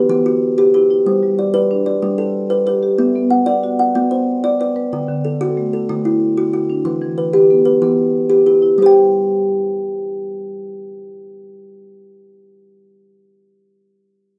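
A plucked kalimba and a soft-mallet marimba begin together, spinning arpeggios into a hypnotic, rippling cycle in the southern African traditional style, where interlocking patterns recall mbira music. The pulse sits at 124 beats per minute, counted in dotted quarters across a 12/8 metre with a straight feel. Up front, the kalimba has a woody, hollow-box ring from its thumb plucks, while the marimba sits further back, its rosewood bars sounding mellow, round and airy. Through the first section the harmony cycles through Em, G, Bm, D and back to Em, then at 8.8 seconds a second section arrives where the chords fall away and the arpeggios carry on unaccompanied by harmony. A studio reverb wets the rough, demo-like mix, and this short cut from a longer piece ends with both instruments around 13.5 seconds.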